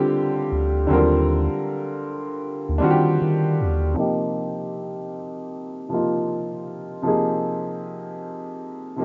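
A lazy, swung 4/4 groove at 78 BPM sets this nostalgic, mellow lo-fi hip hop excerpt in Eb major, cut from a longer piece, where a woody, slightly detuned upright piano with a low-pass filter carries the accompaniment from 0.0 to 9.0 seconds over chords moving from C7sus2 and Eb6 to Ebadd9 and Ab. A deep, round analog bass with a fast attack and sustained, dark tone sits up front from 0.5 to 4.0 seconds, after which a filter sweep colors the piano through the second section. Light studio reverb and a rough home-demo, cassette-tape sound with dulled highs give the whole a vintage haze.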